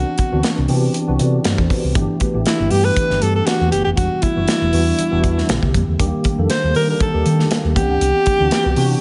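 Lightly reverberant, with a gently rounded top end, this glossy, breezy 1980s jazz-funk pop excerpt at 119 BPM places a breathy, intimate alto saxophone melody with delay up front over a mellow tine electric piano with ensemble chorus and a dark, round hollow-body electric bass, while a punchy modern studio drum kit with gated reverb enters at 0.2 s and very quiet, high-tuned congas join at 2.0 s, all moving through lush chords from Cmaj9#11 to Ebmaj7 and back.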